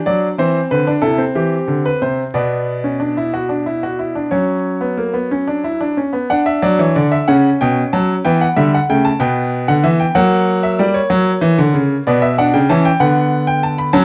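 A solo grand piano, brilliant and up front, plays a contemplative yet driving baroque-style three-part fugue in a straight 12/8, its harmony moving from C through F#sus4/B and F#5 before a second section opens on Bm at 6.3 seconds and passes through F#7 back to Bm, set in light reverb with vinyl crackle in this passage cut from a longer piece.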